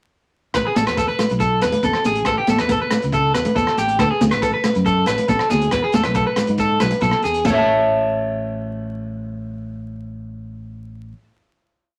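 Highlife guitar band piece, carefree and sunny, in which a twangy, slightly broken-up electric guitar plays an up-front arpeggiated ostinato over a round, punchy, syncopated bass riff, a gritty, saturated breakbeat kit with dark cymbals and a tight kick, a picked acoustic guitar ostinato in the background, and ringing, high-tuned congas with grainy maracas, set in a small, wet room with vinyl crackle, until the drums, percussion and acoustic guitar stop near 7.6 seconds and the electric guitar and bass ring out the final chord to about 11.2 seconds.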